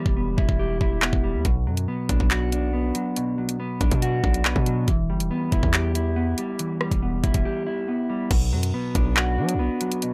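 A dry cut from a longer drill track sets a dark, menacing mood over a half-time feel. A clean, fingered electric guitar treated with lush chorus sits up front alongside the electronic drum kit, whose knocking kick, bright hi-hats, handclaps, rim clicks and crash cymbal anchor the groove, while a punchy, heavy 808-style bass with a sine tone, a noise layer, a fast attack and a decaying tail fills the low end. Breaks fall at 0.0 and 7.5 seconds, and the harmony moves between Em and Bm, landing on Bm as a new section begins at 8.3 seconds.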